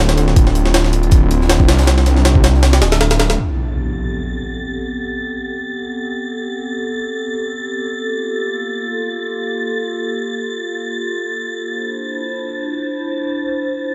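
A warbling, lo-fi tape-like pad carries sustained chords moving from Dm9 through Am9 and Gm9 back to Dm9 throughout this nostalgic, atmospheric drum and bass and jungle fragment in free time and A minor. It opens over a thick, menacing detuned saw bass, a gritty, overdriven, pitched-up jungle sampler kit with a thumpy kick, and a very quiet, crisp fusion kit in a small pumping room. All of these stop by 3.4 seconds, when an electronic impact hits and an airy, breathy wind-like noise texture drifts in high above the pad.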